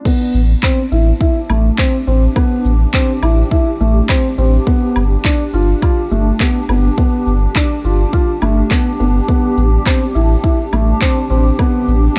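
Piano and strings electronica in A minor at 104 BPM, intimate and hypnotic, cut from a longer piece during a drop where a dark, woody upright piano riff with digital delay sits up front over a deep, up-front electronic kick and a layered deep house kit of crash, handclaps, shaker and woodblock in small room ambience, while a round sine sub bass pumps beneath and a blurred, evolving granular pad with slow attack and built-in reverb drifts in at 0.9 seconds across Am7 and G7 chords.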